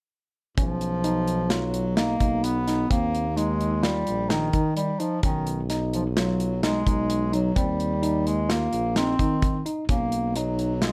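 A mellow, smooth-topped bass clarinet carries the melody in a classical style, up front over an intricate, bright progressive instrumental at 129 BPM in 5/4 that moves between Bmaj9, Eb6 and Badd9. A worn, slightly out-of-tune tine electric piano, lightly overdriven through a combo amp, spins arpeggios above a warm, close-miked tuba bass with light vibrato. A dark, acoustic drum kit with a tight kick and rolled-off top keeps the uneven meter, all set in moderate studio reverb in this short fragment of a longer piece.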